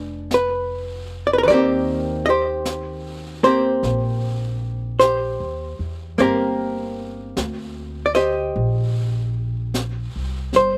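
Romantic and tender, this slow jazz ballad in Eb major drifts along at 51 BPM in 4/4 with swung eighths, moving from a rootless Bb7b9 to an Eb6 at 1.5 seconds. An up-front, dark, clean hollow-body archtop guitar, picked and compressed with a slapback echo, carries the accompaniment over a woody pizzicato upright bass on steel strings. A natural-sounding brush kit with a high-tuned snare and hi-hat joins at 0.3 seconds, and the whole cut from a longer piece sounds dry, recorded outdoors with little reverb.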